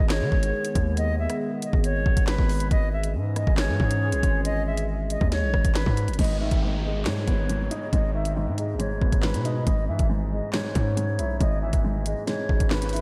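A dark, menacing drill cut from a longer piece, moving in a half-time feel at 138 BPM in G# minor, with an airy, vibrato-laced concert flute carrying the melody through a low-pass filter and diffuse delay over a moody, detuned analog pad treated with chorus and phaser. A heavy, saturated 808-style bass and an up-front drill kit with knocking kick, sharp snare, hi-hats, handclaps, rim clicks and crash drive the track throughout. At 6.2 seconds the pad gives way to a brilliant, short-sustained grand piano alongside a brief electronic downlifter, all set in a dreamy hall reverb.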